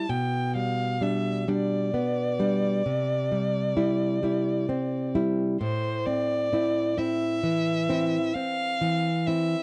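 A bowed solo violin and a fingerpicked nylon-string guitar begin together in this serene, tender romantic duo, cut from a longer piece and moving in a rubato 12/8. The violin carries the melody with a rich, focused tone, a smooth top and vibrato, while the small, bright guitar accompanies through G/B, C and Am and sits slightly louder in the balance. Both are close and up front in a dry 1970s-style studio sound with a touch of light reverb.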